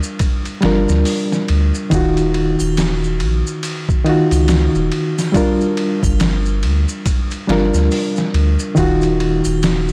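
A dry, gritty recording with a bed of vinyl crackle opens this dark, melancholic trip hop fragment, cut from a longer piece and moving at a slow 70 BPM in 4/4 with a 16th-note swing. A bright, reedy electric piano sits up front from the very start, its clean tone coloured by harmonic tremolo, a low-pass filter and tape echo as it moves between Gm7 and Ebmadd9. Maracas and triangle ride faintly in the background with a vintage, band-limited sound. The sampler-style drum kit arrives at 0.2 seconds, pitched down, compressed and overdriven, with a thumpy kick, medium-tuned snare, hi-hat and ride cymbal pushed up front. At 0.6 seconds a soft dub sub bass joins, deep and round, with a fast attack and sustained notes thickened by transformer saturation.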